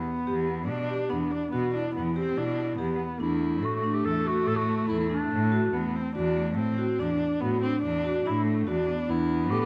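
Heard through the moderate reverb of a recital hall, this pensive yet urgent contemporary instrumental piece in 7/4 at 143 BPM is cut from a longer work, with a clear, distant clarinet carrying the melody over a dark, woody bowed viola on the second line, metallic, ringing vibraphone arpeggios played with medium mallets and the motor off, and a rich, focused bowed cello bass with vibrato, the viola and cello up front as the harmony moves from Em7 to Dadd9/E at 3.2 seconds.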